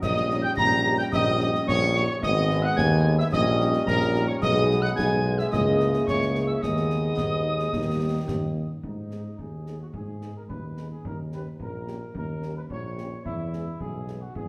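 A straight 2/4 pulse at 109 BPM drives this martial, resolute military-style march for wind band in G# minor, a fragment cut from a longer piece. A mellow tuba sits up front with a soft attack and light vibrato, carrying the bass beneath a trumpet section that states the melody from a distant, roomy position, while concert snare drum, clash cymbals with a dark cast, and concert bass drum keep the march in a small acoustic space. A pure, expressive piccolo traces a tongued second line with vibrato high above, and a dark trombone section holds sustained chords in the background, both dropping out around 8.5 seconds. Behind them a tight French horn section with a smooth top enters just after the opening and fills in the accompaniment almost to the end. The harmony moves between G# minor and D#7 through the opening section, and after 8.8 seconds a second section carries on with trumpets, horns, tuba and drums before turning to an E chord near the close. 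The whole ensemble is bathed in the lush reverb of a scoring stage.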